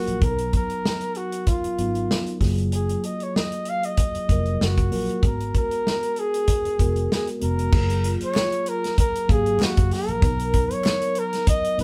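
Smooth and romantic, this lush 1970s-style soul excerpt at 96 BPM in F# major, with a gently swung sixteenth feel, sets an up-front, mellow flugelhorn melody full of vibrato and scooped notes over clean tine electric piano chords, a dark, round, foam-muted fingered bass and a dry, tight acoustic drum kit with dark cymbals; a ringing, band-limited vibraphone joins in the background at 8.0 s and very quiet, hollow group handclaps come in at 8.3 s, the band heard playing together in one room with light reverb.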